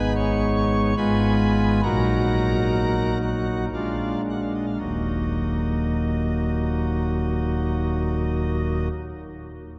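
Grave and dark, this short fragment of a chorale-style classical piece is played by a solo pipe organ in Eb minor, in a slow 3/4 somewhere between 54 and 76 BPM. The organ speaks through a nasal cornet solo stop with tremulant and romantic voicing, placed up front and spanning from deep pedal tones at Eb1 up to Db6. The opening phrase slows down over its first 4.8 seconds, moving from Abm through Fdim/Ab and Ebm/Bb to a Bb7 that settles onto Ebm, where a brief second phrase begins. A cathedral reverb with a 5.3-second decay surrounds the sound, giving the dark production a long, cavernous tail. The organ's sound ends at 8.9 seconds.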